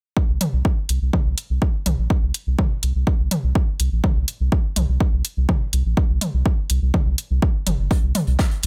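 A round, nasal analog bass sits up front under a filter sweep and sidechain pumping, ranging from G1 to C2 beneath a punchy, overdriven electronic kick and a house kit of bright hi-hats and toms in this melancholic, hypnotic melodic techno excerpt at 124 BPM, with a loose acoustic indie kit bringing a fat snare and high-passed hats in at 7.9 seconds amid small-room ambience.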